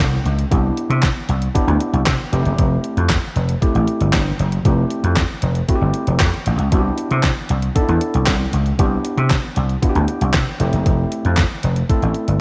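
A steady, straight 4/4 groove drives this danceable, smooth early-eighties boogie funk clip, cut from a longer piece. A detuned 8-bit digital drum machine sits up front with a thumpy kick, a medium-tuned snare, hi-hat and handclaps, its sampler-style sound giving the beat an electronic edge. Beside it, a vintage slap bass plays round and punchy through an amp, also up front, anchoring the low end. An overdriven tine electric piano supplies barky, gritty chords under a lush chorus, moving between Cmaj9 and Fmaj9. A very quiet group handclap, crisp and compressed, joins at 1.0 seconds and drops out at 11.5 seconds, all within a light reverb.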